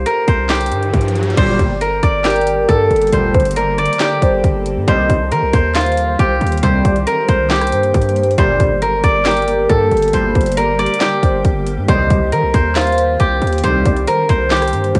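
A bright, silvery fingerpicked zither melody with cassette-tape haze opens over a punchy sine 808 bass and a gritty trap kit with a hard-clipped kick, sharp snare and metallic hats, while a faint riser leads into 1.4 seconds, when a velvety chorused synth lead and glossy phased polysynth stabs arrive, followed at 2.2 seconds by a blurred granular cloud pad, all moving between G minor and C minor in a menacing, eerie half-time hip hop and trap groove at 137 BPM.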